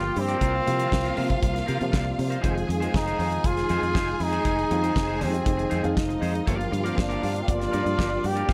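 A driving, glamorous disco passage, cut from a longer piece, opens with a bright trombone singing the melody up front, its scooped notes carrying a distant, roomy pop-style tone. Beside it, a lush studio violin section bows a smooth, focused second line with vibrato, while a fingered electric bass sits punchy and direct beneath the harmony. A damped 70s drum kit joins at 0.2 seconds, dry and polished, with a fat snare, tight kick and hi-hat close to the front. In the background, a dark baby grand piano adds mellow, intimate accompaniment with audible action noise and a short sustain, playing a fill from 0.9 to 2.4 seconds, and a twangy, slightly broken-up electric guitar contributes picked accompaniment. A round, percussive tonewheel organ holds sustained chords with key click, chorus vibrato and a fast rotary speaker, as the harmony moves from C7sus4 to Fm7 and then Gm7, all within light reverb and a small room ambience.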